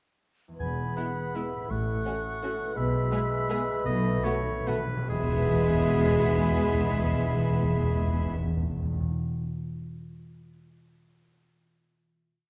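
Round, soft-mallet timpani sit up front in this sweeping, festive orchestral ballroom waltz in E major, a whole piece in 3/4 at a rubato 135-183 BPM that slows from 2.2 s and features a timpani fill at 3.9 s, as a clear, punchy oboe and an airy silver flute carry second lines above a warm chamber violin melody, with a very quiet rich symphonic violin section, a lush viola section, a mellow bassoon, a faint clarinet, and smooth-topped French horn and distant trombone sections adding after-beat and sustained chords, dark cello and woody double bass sections holding the bass in the background, a ringing harp playing rolled chords, and a reverberant recital-hall sound carrying the close on a final E chord at 5.1 s.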